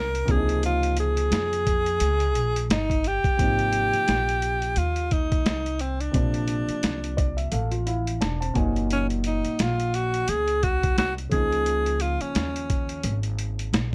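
Jazz-hop hip hop at 87 BPM in Ab major with a smooth, warm mood and swung 16ths, where a breathy, close-miked alto saxophone carries the melody as a solo through the opening 3.4 seconds over a mellow, vintage concert grand piano with audible action noise, a woody pizzicato upright bass on gut strings, and a gritty, pitched-down, tape-warm boom bap drum kit with a thumpy kick, the piano stepping forward for a fill from 6.8 to 8.9 seconds amid light reverb and a dark production in this cut from a longer piece.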